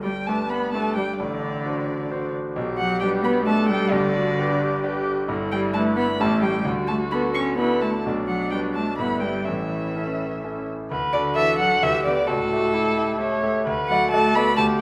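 A reverberant recital hall surrounds this quick, lively and graceful classical-period movement for piano quartet in 3/4, played with rubato and cut from a longer piece. A single con sordino violin carries the melody up front with a veiled, distant tone and vibrato, while a brilliant, polished concert grand with deep bass accompanies alongside a dark, lightly vibrated viola. The cello, also con sordino, adds a soft-edged second line with portamento, and a new section begins at 10.9 seconds.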